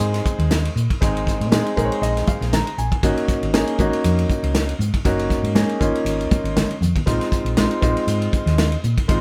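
Electric jazz fusion with a driving, intense swing on sixteenths, this short cut from a longer piece rides sus chords on Bb and Ab while a clear, open grand piano with deep bass sits up front and drops a fill at 1.5 seconds. A dark, round hollow-body electric bass anchors the groove beneath a tight, natural-sounding funk kit, up front with a high-tuned snare and a tight kick, with bright, damped congas struck hard in the background. The band plays together in one room with moderate reverb, and the drums break into a brief fill at 6.7 seconds before the harmony returns to Bb at 7.1 seconds.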